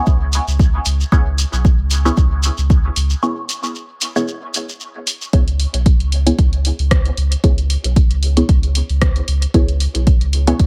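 A muted, filtered chord stab on C#m7 opens this meditative, hypnotic dub techno passage at 0.0 seconds, its detuned sawtooth and square tones plucked short through a phaser, dub echo and sidechain pumping. Almost at once a deep, tape-warm electronic kick sits up front at 114 BPM in 4/4 with a slight 16th-note swing, alongside a round sine sub bass that pumps in time with it. A punchy analog drum machine adds hi-hat and rim click with the sound of a large room, while a grainy, close acoustic shekere plays until 5.3 seconds. A break arrives at 3.2 seconds, and from 5.3 seconds a filter sweep on the stab keeps the repeating section evolving. The parts sit in a digital ambience in C# minor, a cut taken from a longer piece.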